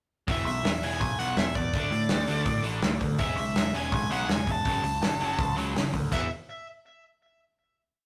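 A rough rehearsal-room recording with tube saturation and moderate reverb captures a rebellious, rowdy punk rock piece at 164 BPM in E mixolydian, where a loose, up-front acoustic drum kit drives a fast punk groove, a bright double-tracked distorted guitar chugs palm-muted eighth notes, a growling overdriven bass pushes driving eighth notes, and a smooth overdriven lead guitar with digital delay sings a motif-based melody over E5, D5, C#m/E and F#m before everything lands on a final E5 chord at 6.1 seconds.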